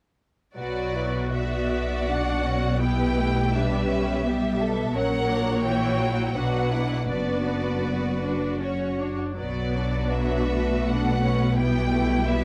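A dark production with light reverb frames this cut from a slow, romantic B minor movement for string orchestra, moving in a rubato 3/4 at about 76-87 BPM with a yearning, melancholic mood. From 0.6 s to 12.4 s, a lush, vibrato-laden violin section carries the melody over a second violin line, while a clear, focused viola section fills the accompaniment. Beneath them, a rich cello section sits in the background and a smooth, even chamber double bass section sounds up front yet distant, the bowed harmony moving from Bm through Em/B and F#7/A# before returning to Bm and Em/B.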